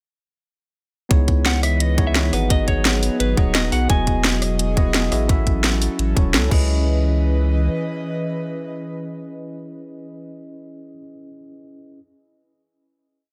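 A dry mix carries this lush, dreamy liquid drum and bass piece in C# minor at 172 BPM, built on a drop from 1.1 seconds that moves through C#m9, G#m7, Emaj9 and A6 before a final hit at 6.7 seconds. A tight, overdriven electronic kick and a garage drum kit with a cracking snare, rim, hats and crash drive rolling two-step drums, while a round sine sub bass sits up front with long gliding notes. A clean tine electric piano with dub echo holds drop-2 chords with syncopated pushes, an airy, breathy pad adds chorused sustained chords, and a warm, picked electric guitar with dub echo plays a free melody until 4.2 seconds.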